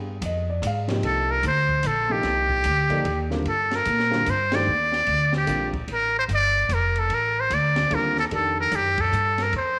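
Heard through a moderate echo-chamber reverb with small-room ambience, this intense, hypnotic modal jazz fragment in swung triple time opens on a dark, mellow grand piano and a woody, growly upright bass, with an open drum kit of dark cymbals, high-tuned snare and punchy kick joining at 0.2 seconds. A buzzy, breathy trumpet in a metal mute takes the solo up front from 1.1 seconds, whispered and intimate with vibrato, while the short-sustained piano drops out at 5.7 seconds and returns briefly near the close. The band lands two shared accents along the way.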